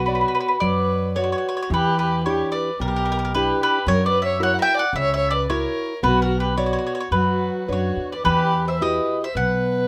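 A wistful, romantic Italian folk serenade opens with all four players together: a mellow, round mandolin sits up front carrying the melody on its doubled strings. A single bowed violin, played sul tasto with light vibrato and a soft attack, adds a dark, intimate second line. Beneath them, a bright, full-bodied nylon-string guitar is fingerpicked in a classical manner, and a woody pizzicato upright bass anchors the low end. The feel is rubato, with the harmony moving from Bmadd9 through Em7 and F#7 before returning home, then shifting to Emadd9 as a new section begins at 8.3 seconds. Light reverb surrounds the small ensemble in this short cut from a longer piece.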